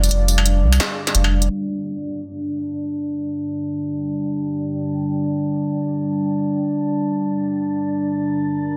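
Heavy and tense, this half-time drum and bass excerpt in free time opens on a drop where saturated, thick sub bass and an electronic industrial kit of clanging snare, smooth hats, struck metal and tambourine hit together until 1.5 s, while a deep, moody, warbling sawtooth pad with 12-bit sampler grit sustains dark chords under a filter sweep and an eerie, metallic FM drone enters at 2.0 s, all set in an echo chamber reverb and a dense, heavily limited master.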